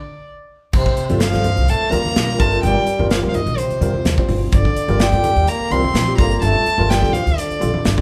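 A straight 4/4 pulse at 126 BPM drives this intense electric jazz fusion excerpt in G minor: a rich, floating bowed violin carries the melody over a dark, breathy tenor saxophone second line, the two playing alone until upright bass with a woody, growly pizzicato tone and a polished, up-front studio drum kit with a tight kick enter at 0.7 seconds, followed at 1.1 seconds by a worn, lightly overdriven tine electric piano and very quiet, low-tuned congas, all heard as a live band in one room with moderate large-studio reverb as the chords move from G9sus4 through Gm7 and Fsus4/G to Gm11.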